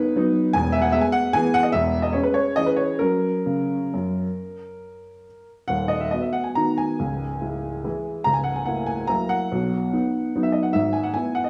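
A clear, woody upright piano plays alone throughout this playful, graceful classical waltz fragment in a rubato three, its vintage tone and long sustain sitting up front within the wet reverb of a recital hall and a small room's ambience.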